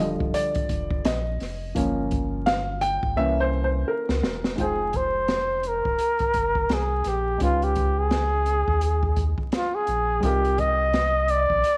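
A breathy, whispered flugelhorn with a touch of vibrato and a slapback echo takes the melody at 4.6 seconds, sitting intimately up front in this nocturnal, smoky jazz-hop fragment at 85 BPM with a swung 16th-note feel. Before that, a dark, vintage grand piano with short sustain leads the opening over a round sine sub bass and a smooth acoustic jazz kit with a boomy kick, high-tuned snare and rolled-off top, whose fill at 3.2 seconds ushers in the horn. Rich extended chords such as Ebmaj9, C7b9 and Fm9 drift by in a small room with light reverb, all wrapped in a haze of vinyl crackle.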